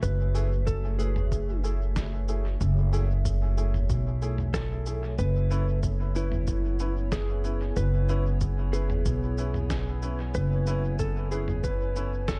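A woody, plucked upright bass sits up front as this hazy, deep ambient dub fragment from a longer piece opens with a warbling, nostalgic pad, a punchy electronic kick tucked in the background and a muffled, pitched-down sampler-style kit of cabasa, snare and toms; a dark, compressed lap steel plays a slide melody, a clear upright piano adds short stabs from 0.3 seconds, and the lap steel, kit and piano each trail dub echo in an echo-heavy mix with little reverb.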